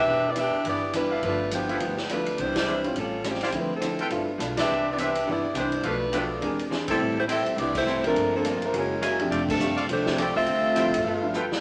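Swinging and brassy, this fast big band swing passage at 208 BPM moves from C major into A minor at 7.0 seconds. A clear, close-miked saxophone section carries the melody up front over tight trumpet stabs with light vibrato, while a woody pizzicato upright bass, a clean, compressed hollow-body electric guitar, a present grand piano and a roomy, distant drum kit with a boomy kick drive the swing beneath band accents and drum fills. At 6.2 seconds a dark, veiled trombone section in bucket mutes slips in behind as a second line, all set in a wet studio ambience and cut from a longer piece.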